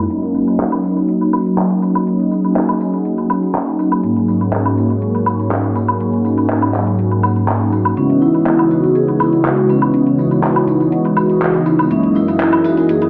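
Sensual and groovy, this nu-disco fragment moves at 122 BPM in a straight 4/4, set in C# dorian and cut from a longer piece. Up front, a mellow synth brass plays the accompaniment, brassy and round with detuned sawtooth tone, vibrato, chorus, phaser and tape echo, while a lush unison pad holds thick, warbling sustained chords with a slow attack and long release beneath it. The pop drum kit is electronic and layered, with handclaps, shaker, woodblock and warm hats, overdriven and re-recorded in a small room, and a faint acoustic tambourine sits far back in the mix. Filter sweeps run through the drums, the brass and the pad for the whole passage, over a chord movement of D#m7/F#, G#9sus4, C#m11 and F#13. At 8.0 seconds a vibraphone struck with hard mallets takes the melody, metallic and ringing yet dark, with a slow motor vibrato, 12-bit sampler grit and tape echo. The echo-heavy mix is softened by a low-pass filter and a moderate plate reverb.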